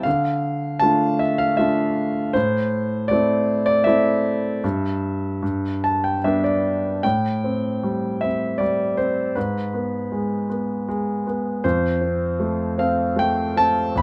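A lone concert grand piano opens this reflective, wistful classical fragment, placed up front with an intimate presence where the mechanical action noise can be heard. Moving in 3/4 at around 78 BPM with a rubato feel, the playing spans from E2 to B5, giving the instrument's deep bass plenty of room beneath its smooth, slightly vintage tone. The harmony passes through D minor and A minor, pauses briefly, then lands on G as the piano plays a short fill from 5.4 seconds. At 7.0 seconds a new passage settles into A minor, moving from A minor seventh through G sharp minor to F. Tuned to A4 = 436 Hz and bathed in light reverb, this lyrical solo piano passage is cut from a longer piece and ends at 14.0 seconds.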